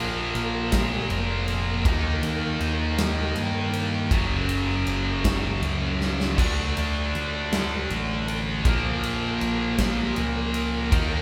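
Set in a straight 6/8 with a slow pulse of 53 BPM counted in dotted quarters, this brief fragment of quiet-loud alternative rock feels cathartic and brooding. A high-gain distorted guitar, double-tracked and up front, carries a bright, picked riff from F#2 to Eb4 across the whole passage. Beneath it, a growling picked electric bass with a round, overdriven tone holds down the low end between F1 and G2. A huge arena drum kit enters at 0.3 seconds with a punchy kick, medium-tuned snare, crash and ride, its natural big-room sound crowned by bright cymbals, and a fill at 6.0 seconds leads into the next chord. The harmony moves from Bb5 through Eb and F#5 to D5 before settling on Bbm, all captured as a band playing live in one room with light reverb.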